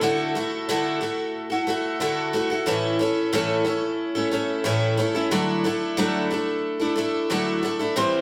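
A picked twelve-string acoustic guitar opens the excerpt alone, its bright, shimmering, octave-doubled tone sitting up front as it moves through Dadd9, A and back to Dadd9 in D major. This is open-road rock at 91 BPM in a straight 4/4 with a warm mood, cut from a longer piece. The guitar rings in a moderate large studio reverb with the live feel of a band playing together in one room, and it ends at 8.2 seconds.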